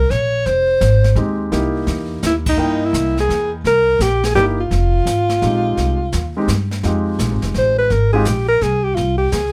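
Small-group swing and bop jazz in F minor, moody and late-night, swings in 3/4 at 169 BPM, with a forceful, vibrato-laden alto saxophone carrying the melody and soloing from 6.8 seconds, a woody pizzicato upright bass, an airy brushed kit with a boomy kick, and an intimate grand piano with audible action noise comping from 1.2 to 8.3 seconds over Fm7 and C7#9, all in light reverb with a band accent at 2.4 seconds in this brief cut from a longer piece.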